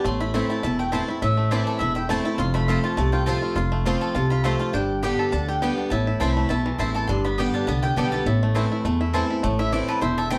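Bluegrass in A minor at a brisk 204 BPM with a swung 4/4 feel, this haunting, rustic passage sets a bright, double-strung mandolin melody, which stops at 9.1 s, over round, picked mandolin stabs, twangy fingerpicked banjo arpeggios, a boxy swing-style acoustic guitar sitting up front, and a thumpy, woody gut-string upright bass, all heard from further back in a wet studio room.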